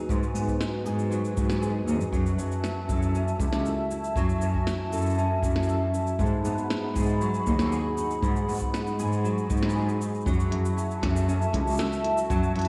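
Autumnal and intimate, this folktronica excerpt in F# dorian moves at 118 BPM as a warbling, detuned tape-like pad holds sustained chords over bright fingerpicked nylon-string guitar arpeggios, a dark bowed cello with vibrato carries the bass up front, and a punchy acoustic kick played with brushes joins a minimal electronic kit of clicky hi-hats, tiny snare and cabasa, set in a dreamy, reverb-soaked mix with vinyl crackle.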